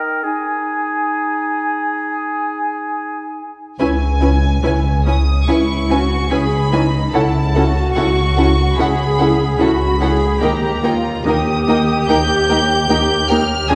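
A sorrowful, moving cinematic film score in C# minor, cut from a longer piece, unfolding at a rubato 66-75 BPM in 4/4. It opens with a clear clarinet, a pure, expressive concert flute set at a distance, and an up-front oboe sharing the woodwind lines, before the strings take over at 3.8 s: a violin section carries the melody with light vibrato and sul tasto bowing, over a smooth-topped second violin line in the background, a warm viola accompaniment and an up-front double bass, with a dark cello section joining at 5.5 s. The intimate, close strings sit in the wet reverb of a scoring stage, heard from further back in the room as the harmony moves from C#m7 through A6/C# to D#.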